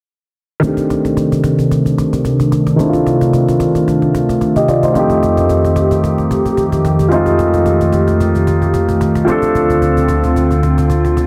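Set in a moderate, lush hall reverb and densely limited, this soulful, deep amapiano excerpt at 111 BPM in C dorian, with swung sixteenths and a filter sweep running from 0.6 s to 11.3 s, places a hollow, airy, flute-like pad with chorus and a warm grand piano up front over snappy, soft-handed cajon with snares, moving through Cm69, F9 and Dm7.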